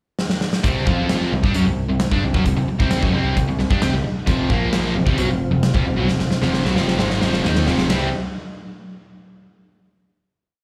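Swaggering and sunny, this short classic rock piece at 133 BPM opens with a drum fill at 0.2 seconds from a punchy, up-front acoustic kit in a bright stone room, before two overdriven guitars, one bright and cranked and the other biting and set in the background, both with slapback echo, drive a power-chord riff doubled by a direct picked bass playing simple root and fifth; a very quiet, flute-like tonewheel organ with key click and a slow rotary speaker slips in at 4.5 seconds with held, swelling chords, and a second fill leads to a final C chord, the performance heard as a live club gig through the venue's PA.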